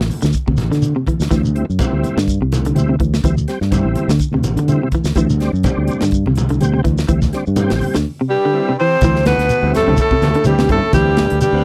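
Afrobeat groove at 125 BPM with a hypnotic, funky feel over a D7sus4 chord, built on a round, up-front fingered electric bass, a tight, dry funk drum kit, low-tuned congas in the background, grainy shekere and clean picked electric guitar arpeggios, joined at 1.3 seconds by a smooth tonewheel organ with chorus vibrato and fast rotary speaker, before a saxophone section enters at 8.3 seconds with a bright, scooping alto carrying the melody over raspy tenor and edgy, forceful baritone lines, all in a dry, close 1970s-style studio sound cut from a longer piece.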